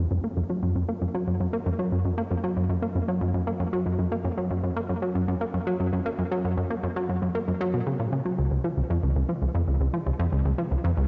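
Ambient excerpt at 116 BPM in F# major, luminous and expansive, where a lone plucky analog bass plays from 0.0 to 11.1 seconds, its punchy, funky, wave-folded tone with fast-attack, decaying filter plucks sitting saturated and up front through cassette tape and analog delay, all bathed in a lush hall reverb within a dark, warm production.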